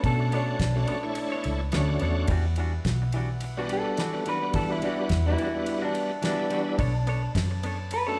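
A live, one-room band sound with a moderate large-studio reverb and a faint mains hum fills this short cut from a longer soul-blues piece, whose mood is soulful and smoky. It sits at 107 BPM in 4/4 with a straight-eighth feel, a light swing on the sixteenths and a tuning of A4 = 438 Hz, moving from Bm9 to Em9 at 2.3 seconds and back to Bm9 at 6.8 seconds. Out front, a lo-fi, slightly broken-up electric guitar through a small old amp carries the picked melody as a solo. Beside it, a bright, shouting tonewheel organ, lightly overdriven through a slow rotary speaker with chorus vibrato, fills the accompaniment. A round, foam-muted fingered bass pushes forward, while a damped 70s kit gives a fat snare, a tight kick and ride cymbal. Throughout, a punchy horn section holds very quiet sustained chords in octaves, and from 0.2 seconds a twangy, scooped, direct-recorded clean guitar adds compressed stabs.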